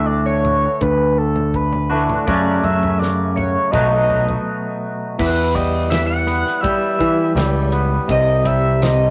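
Psychedelic rock with a trippy, hypnotic pull, cut from a longer piece, where a tearing, wave-folded sync lead with chorus and vibrato carries the melody over a bright, twangy guitar riff shimmering with harmonic tremolo and a round, overdriven picked bass sitting up front. A damped 70s kit with a fat snare and tight kick enters at 0.4 seconds, and after a brief break at 4.5 seconds the harmony turns darker from 5.2 seconds, moving through Em to Cm. The whole thing has the rough feel of a rehearsal room with moderate studio ambience.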